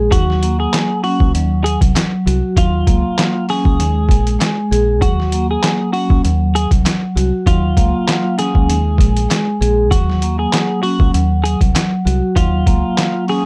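Boom-bap hip-hop at 98 BPM in Eb dorian with a dark, tough mood and a lightly swung 16th-note feel, cut from a longer piece, where a compressed, pitched-down sampler-style drum kit with a thumpy kick, medium-tuned snare, handclaps and hi-hat sits up front beside a round, punchy, foam-muted dub bass. Soft-mallet vibraphone with slow motor vibrato rings mellow and metallic in a boxy small room over a looping Ebm7, Cdim, Gbmaj7, Bb7sus4 progression, while a clean picked electric guitar carries a narrow melody through analog chorus and tape echo, all captured dry and gritty on hardware.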